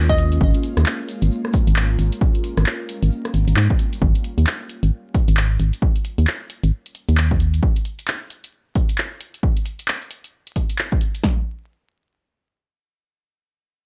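Bouncy and late-night, this UK garage excerpt rides a two-step groove at 133 BPM in 4/4, with a 61% swing on the sixteenths and a dusting of vinyl crackle over a fairly dry sound. An ethereal, airy pad opens on sustained, detuned chords, its slow attack and long release shaded by ensemble chorus, phaser and built-in reverb, and it pumps against the beat before dropping out at 4.0 seconds along with a grainy little tube shaker tucked in the background. Underneath, a hollow, organ-like FM bass sits up front with fast-attack, decaying notes in a dark low register, moving through chords from C#69 over G# to A#m6 and settling on G#5 before stopping at 7.6 seconds. The analog drum machine carries on, its punchy, tape-warm kick and snare placed forward, while handclaps, hi-hat and rim click sit a little further back, all re-recorded in a small room. The kit runs on by itself until about 11.4 seconds, leaving only crackle as a brief new section begins.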